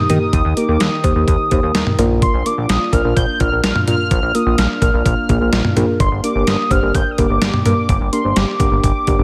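A velvety, full-bodied synth lead with vibrato and delay sings high over a mellow, detuned analog pad sitting in the background from the opening moment. From 0.1 seconds, muted, felt-like synth keys join, along with a glossy, nasal chorused bass and an up-front, thumpy 8-bit drum machine with cowbell, toms and gated reverb, in this bright, wistful synth-pop excerpt that moves from Eb to Bb to G minor.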